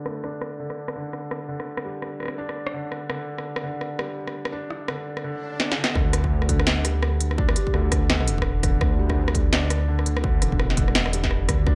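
Half-time drum and bass at 168 BPM with a cinematic, spacious mood, opening on muted, intimate felt-piano arpeggios with gritty 12-bit sampler character and dub echo beside crisp hats and a clanging snare from an industrial drum kit, both under a filter sweep, before a faint electronic swell and a drum fill lead into a drop at 6.0 seconds where a rumbling, detuned saw bass and a heavy electronic kick arrive, with a single ringing vibraphone note at 7.6 seconds sitting in the background as the harmony moves from D5 to Dsus2.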